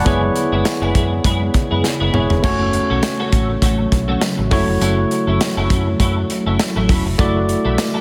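Nostalgic and moody, this short cut from a 1980s-style pop piece moves at 101 BPM in F# minor with a light sixteenth-note swing, its bell-like tine electric piano sitting up front over a glassy, ethereal FM pad washed in ensemble chorus and built-in reverb. A round, foam-muted fingered electric bass anchors the low end while a twangy, compressed twelve-string electric guitar plays a picked riff through chorus and digital delay. A punchy modern studio drum kit with tambourine and a pumping room sound drives the groove, adding a drum fill between 1.8 and 2.4 seconds as the chords shift from C#m7/F# through F#m and A6 to Dadd9/F#.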